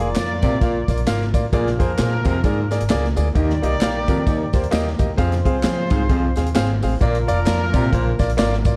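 A swung 4/4 groove at 131 BPM drives this short, passionate slice of uptempo 1960s-style soul, cut from a longer piece and moving through Bb, Bb7, Eb and Fm before returning to Bb. A big-band drum kit with a punchy kick, medium-tuned snare and hi-hat sits in an airy hall, while the upright bass plays woody, pizzicato lines beneath, and handclaps and tambourine stay in the background in a small room. The concert grand piano gives natural accompaniment with deep bass, and a close-miked baritone saxophone enters at 0.4 seconds with a warm jazz-style riff, colored by light vibrato and scooped notes. Above it, a clear, distant horn section supplies a punchy second line with vibrato, sounding roomy as an ensemble. Light reverb and a dark, warm production give the whole passage a driving character.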